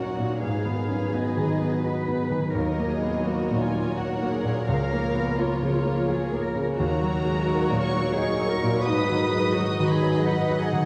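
Steeped in a dark, reverberant scoring-stage ambience, this bittersweet, sorrowful cinematic fragment in a rubato three-four unfolds as an intimate chamber violin section carries the melody with light vibrato over a pure, floating second violin line, while a clear, up-front grand piano accompanies, a woody, lush viola section murmurs in the background, a ringing fingerpicked concert harp spins arpeggios, and a soft-attacked sul tasto cello section holds the bass beneath chords moving from Abm7 through Ebm7 and Bbm/Db.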